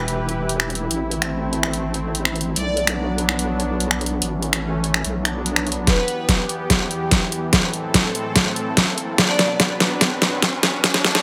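A heavy, saturated wobble bass drives this chaotic, aggressive half-time dubstep clip until 5.9 s, over a lush, detuned supersaw pad with sidechain pumping and an up-front, overdriven drum kit of finger snaps, hi-hat and deep snare, while brief phrases from a rich, vibrato-laden violin section with delay appear, a knocking electronic kick joins at 5.9 s for a build-up with a drum fill and filter sweep, and a riser sits in the background from 7.4 s.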